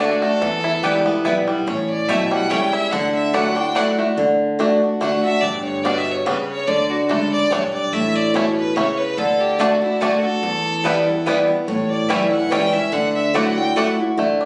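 Bluegrass in 3/4 at 144 BPM, this short cut from a longer piece feels rustic and driving, with a light swing on the eighth notes in D major. Twangy, percussive fingerpicked banjo and a clear, focused bowed fiddle with light vibrato carry the melody together, the fiddle sitting up front. A boxy, up-front picked acoustic guitar with fresh strings supplies swing-style accompaniment, while a woody, thumpy upright bass with gut strings enters at 0.4 seconds and sits low in the mix. A mellow, round mandolin adds picked stabs on its doubled strings early on, drops out at 3.9 seconds, and returns at 9.6 seconds. The chords move from Em and A7 to Dadd9, then through D, G, D5 and A before returning to D, Em, A7 and Dadd9. The sound, captured on a phone in the room with moderate studio reverb, has a dull top end.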